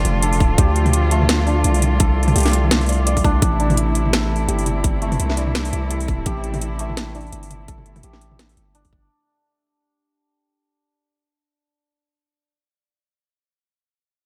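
Half-time drum and bass at 169 BPM with a swung sixteenth feel, this dark, cinematic excerpt opens on a drop over D minor and moves to A minor at 3.4 s, where a fade-out begins. A lush, bowed cello section with expressive vibrato holds sustained chords that pump under sidechain, while hammered santur arpeggios shimmer and ring through delay. A deep, mellow sine 808 bass with tube saturation sits up front beside a tight electronic kick, joined by a layered kit of cracking snare, metallic hats and toms with a tape-warm, small-room character, all in light reverb, and the santur rings on alone from 9.1 s until 12.5 s.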